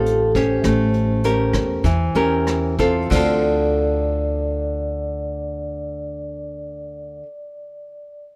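A melancholic, intimate bossa nova fragment, cut from a longer piece, opens with fingerpicked nylon-string guitar, vibraphone and pizzicato upright bass sounding together over a rootless Dm7 that quickly moves to A7b9, while the pulse slows through the first few seconds. The small, up-front guitar carries the accompaniment, and the vibraphone's medium hard mallets give a bright, metallic ring with fast motor vibrato above it. Beneath them the woody bass, strung with steel, holds the low end. A vintage brush kit, distant and roomy in a small room, adds a punchy kick, rim clicks, hi-hat and dark crash cymbal with a rolled-off top before falling away at 3.3 seconds, as the harmony returns to Dm7. Guitar and bass stop around 7.3 seconds, leaving the vibraphone ringing alone in light reverb until 8.3 seconds.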